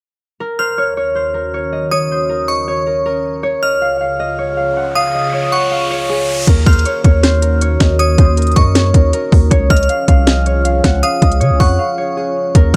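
This hip hop and trap cut, lifted from a longer piece, has a melancholic, brooding mood and a half-time feel. An acoustic concert harp carries the melody up front, its thumb-plucked notes ringing over a moody analog pad of sawtooth and triangle tones with a sub octave, slow attack, chorus and phaser. Above them, a glassy FM synth bell plays a crystalline second line in a high register, treated with chorus, phaser and delay. An electronic riser builds from 4.6 seconds, and at 6.5 seconds a boomy 808-style bass with a sine body and noise layer arrives alongside a trap kit with a hard-clipped kick, sharp snare, crisp hats and crash, the kit roughened by vintage 12-bit sampler grit. The harmony moves between Ebm7 and Db inside a digital ambience, and a brief break lands at 11.8 seconds near the close.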